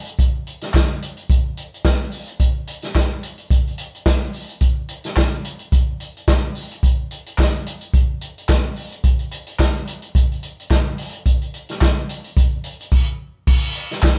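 Danceable and glamorous, this disco groove moves at 108 BPM in 4/4 with a light sixteenth-note swing, taken from a longer piece. A vintage drum kit sits up front from 0.1 seconds, its punchy kick, medium-tuned snare, hi-hat and dark crash cymbal sounding natural in a studio room. A hollow group handclap joins at 0.7 seconds, close and dry in the background, while light reverb and a rolled-off top end give the feel of a band playing live in one room.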